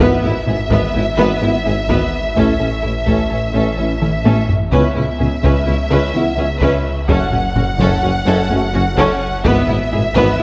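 Heavy-stick taiko drums, close and dry, drive this relentless, futuristic excerpt of a hybrid orchestral and electronic film score in 5/4, with a fill between 4.0 and 4.7 seconds. A focused, vibrato-rich violin section carries the high melody over a smooth second violin line, a studio viola section, and dark French horn chords that drop out at 9.6 seconds, while a very quiet, mellow synth pluck plays arpeggios. The low end stacks a lush bowed double bass section, a very quiet expressive cello section, a clear vintage tuba and a thick, detuned, chorused saw bass, all set in a moderate scoring-stage reverb.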